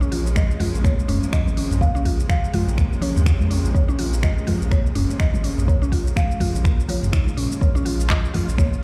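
Warm and earthy, this short afro house excerpt moves at 124 BPM in 4/4 with a 16th-note swing, sitting in Bb minor and opening on a Bbm7 chord. A deep, round sine sub bass anchors the low end with sidechain pumping, while a produced electronic kick enters at 0.4 seconds and drives the groove as the most prominent element. An afro-pop drum kit adds finger snaps, handclaps, smooth hi-hats, shaker and toms, and bright, thin-skinned congas played with soft hands sit close and dry in the background. A woody, detuned FM pluck spins arpeggios through chorus and delay, pumping against the kick, as a lush, bowed symphonic string section holds rich, vibrato-laden chords beneath it. Far back in the mix, a rustic folk marimba struck with medium mallets plays a boxy, dry melody touched with delay, and the whole track carries the large ambience of a big sound system in a bare room.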